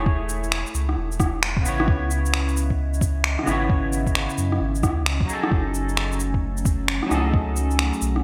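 Future garage at 132 BPM in F# dorian, this short excerpt from a longer piece feels rainy and wistful, with a swung 4/4 groove built on a muffled, pitched-down thumpy kick and up-front overdriven shaker, finger snaps and rim click that sound re-recorded in a large room with gated reverb. A round, sine-like sub bass and a twangy, clean picked electric guitar, treated with analog chorus and digital delay, both pump against the sidechain through Amaj7 and C#m7 before settling on F#m69. A nostalgic, detuned tape-like pad with a slow attack drifts in at 2.5 seconds, its dark warble adding lo-fi haze to the bright 1980s-style digital production and moderate plate reverb.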